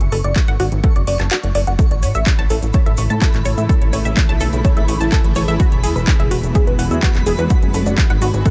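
Hopeful and expansive, this progressive house excerpt moves at 126 BPM in A major, with a punchy, wave-folded analog bass pumping under sidechain compression and a tight, detuned sequenced synth running chorused arpeggios through dub echo. An overdriven house kit with metallic hats and handclaps drives it along, joined by a punchy, up-front electronic kick that drops out from 1.3 to 1.8 seconds, and a grainy egg shaker that sits in the background from 1.8 seconds. A twinkling granular texture sparkles high above throughout, and from 2.7 seconds a shimmering, ethereal pad spreads sustained chords from A through Eadd9 to D/F# under phaser and reverb, in a mix that is otherwise dry.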